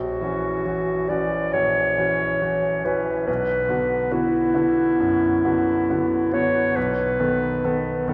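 Solemn and elegiac, this short romantic-era classical excerpt pairs a clear, present clarinet carrying the melody with a bright, brilliant, polished concert grand piano whose deep bass anchors the accompaniment, both placed up front. In B minor at a slow 68 BPM with a free, rubato feel, the harmony moves from F#7/A# to Bm at 3.3 seconds and on to B7 at 6.8 seconds. A long church reverb surrounds the duo, lending the performance a spacious, resonant hall sound.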